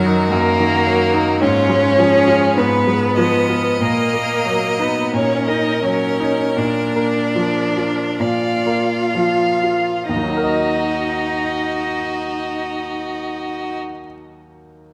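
A bowed cello with a smooth, even vibrato sits up front, carrying a second line in its middle register beneath the rest of this elegiac, melancholic movement for piano quartet, heard as a section cut from a longer classical piece. Above it, a focused, somewhat distant violin sings the melody, while a second violin with a rich tone adds another line just above. A natural-sounding grand piano, also close and present, supplies the accompaniment across a broad span from low bass to the upper middle range. The tempo is slow, between 30 and 57 BPM in 4/4 with free rubato, and it gradually slows through the opening passage in Eb minor, moving through darkened harmonies to a Bb chord before settling back on Eb minor at 10.1 seconds, where a new section begins. The strings fall away at 13.8 seconds, leaving the piano alone until 14.9 seconds, all of it bathed in a wet concert-hall reverb.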